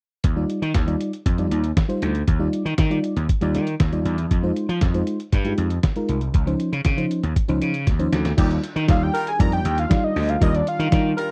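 A straight 4/4 groove at 118 BPM drives this feel-good, smooth slice of early-eighties boogie funk in Eb major, cut from a longer piece. A compressed, pitched-down sampler-style drum kit sits up front with a thumpy kick, a medium-tuned snare, hi-hat and crash, sounding muffled and tape-warm, while a gritty, growly slap bass with overdrive punches along beside it. A mellow FM electric piano with chorus fills in round, dark chords over Ebmaj9, Fm7 and Dbmaj9, its notes striking quickly and decaying. After a drum fill from 7.9 to 8.4 seconds, the harmony returns to Ebmaj9 and a tight, clear horn section enters with a punchy pop-style second line, backed by a very quiet, brassy sawtooth pad with a soft attack and a filter sweep. At 8.9 seconds a fat, nasal analog lead with a sub octave, vibrato and chorus takes the melody high above. The dry, close studio sound keeps every part present and immediate.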